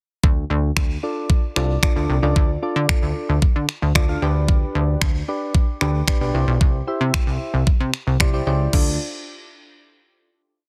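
A plucky analog bass anchors this short, bittersweet yet energetic dance-pop piece in D dorian at 113 BPM, its punchy sawtooth tone pumping against the beat as it plays a syncopated, funky line with muted ghost notes and chromatic approach notes. Up front beside it, an electronic, layered pop drum kit drives a straight four-on-the-floor pulse with a knocking kick, finger snaps and a crash cymbal, the snare carrying a touch of soft clipping. From 1.0 seconds, soft electric-piano-like synth keys add mellow, round chord stabs in close voicing, thickened by chorus and pumping in time with the kick. The harmony moves from Dm to G/D and Cadd9 through the verse before settling on a final Dm chord at 8.7 seconds. The mix is dry and dense, with a heavily limited modern master.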